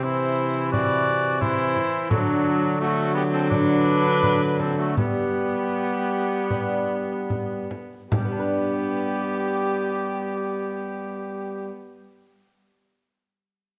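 Stately and festive, this excerpt of a renaissance-style consort dance in G major moves at 72-88 BPM in a straight 4/4, slowing down from 0.7 to 8.1 seconds as the harmony passes from C through D7 to G. A mellow cornet with light vibrato carries the melody over an up-front cor anglais second line, while a delicate, fingerpicked lute with double gut strings sits in the background beside a nasal, reedy viola with an airy bow, and a solo trombone with a smooth top holds the bass. A small, bright frame drum played with soft hands enters at 0.7 seconds and stops at 8.5 seconds, and the consort rings in a dark, warm recital hall reverb.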